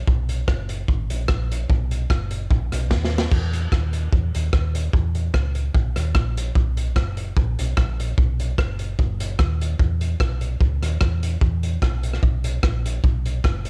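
Ska at 148 BPM with a light swing, joyful and bouncy, this dry excerpt from a longer piece pairs a round, punchy hollow-body short-scale fingered electric bass, dark and amped and ranging from F#1 to E2, with an up-front, gritty, saturated breakbeat drum kit of kick, rim click, snare, hi-hat and dark crash, its tight kick and rolled-off top giving a crunchy edge, plus a drum fill at 2.9 seconds before the groove repeats.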